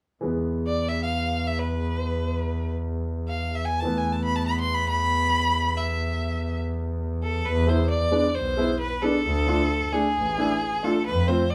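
Festive yet soulful, this short klezmer excerpt unfolds in free time in E phrygian dominant, with a bright, intense bowed violin carrying the melody up front from 0.7 seconds, its vibrato singing over a woody, natural upright piano accompaniment. A bowed double bass, also up front, supports from below with a smooth top and light vibrato, and the trio sounds like a band playing live in one room, wrapped in a wet studio reverb. The harmony rests on E and Asus2/E before shifting to E and then Dm in the second section at 7.5 seconds, and the piece is cut from a longer performance.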